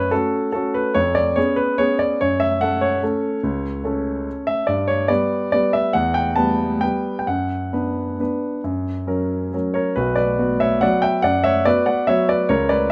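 A solo grand piano opens on an F-sharp minor chord, setting an elegant, bittersweet classical waltz in three-quarter time. The playing moves with a flexible rubato feel, stretching across a range from B1 up to A5. The harmony passes through C#7/E#, returns to F-sharp minor, then turns to G, E minor and a B minor chord over F-sharp before landing on F-sharp major. At 10.0 s a new section begins on B minor and carries through to the close at 12.9 s, as this fragment is cut from a longer piece. The piano tone is smooth and vintage, sitting up front through close, detailed microphones with a light touch of reverb around it.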